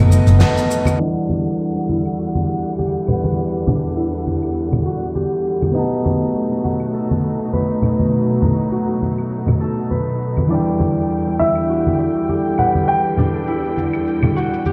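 Heard through a big sound system in a bare stone room, with a moderate plate reverb and a dulled, filtered top, this wistful, smooth sunset chillout cut moves at 101 BPM in E minor with a gentle 16th-note swing, shifting between B7 and Em9. Rich, bowed strings with light vibrato hold sustained chords up front while a gritty, overdriven tine electric piano through a combo amp comps with digital delay and a fingerpicked concert harp ripples arpeggios under a sweeping low-pass filter and delay. Soft brushes on an acoustic kit with a fat snare, hi-hat, shaker and claves enter at 0.1 seconds, and ringing, close congas and bongos join at 0.4 seconds for a band accent. A clear, vintage grand piano with short sustain and tape echo plays a brief melody from 11.4 to 13.7 seconds.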